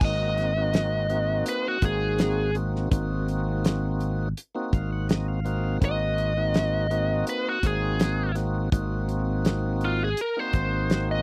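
A biting, overdriven lead guitar carries the melody from the first second, picked up front over a full band in a laid-back, rollicking soul blues at 83 BPM in 4/4, with straight eighths and a light 16th-note swing. Underneath, a tonewheel organ fills out the harmony with a full, lightly overdriven tone, audible key click and a slow rotary speaker, sitting a little further back than the other parts. A fingered electric bass holds a low Ab, sounding direct and punchy, while a damped 70s acoustic drum kit with a fat snare, tight kick, hi-hat and crash cymbal sits mid-forward with a rolled-off top. The whole passage rests on a single Ab9 chord in Ab mixolydian, and the organ steps forward with a brief fill between 4.4 and 5.8 seconds. The sound is dry and close, in the manner of a 1970s studio recording, and the clip is cut from a longer piece, running about 11 seconds.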